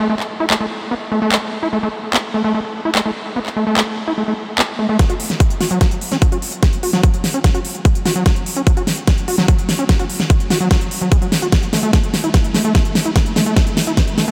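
Alien and intense, this psychedelic trance excerpt in F# minor at 147 BPM, tuned to A4 = 438 Hz, opens on a squelchy, gritty acid bass riff, distorted and pumping with cassette-tape grit and analog delay, joined at 0.2 s by an up-front big-room kit of handclaps, crisp hats and a huge snare, before a punchy, tape-warm electronic kick arrives at 5.0 s to drive a build-up and drum fill through to the end, all set in a dreamy mix soaked in huge ambient reverb.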